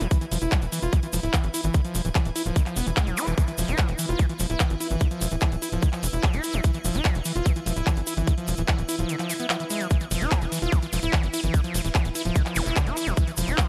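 A short excerpt of up-front, tight electronic kick and squelchy, gritty acid bass drives this alien psychedelic trance at 147 BPM, with a punchy sawtooth sequencer bass underneath, a techno kit of handclaps, metallic hats and ride cymbal, a grainy shaker, a cloudy, detuned granular pad pumping in the background, and brief electronic zaps and a swell at 9.3 seconds.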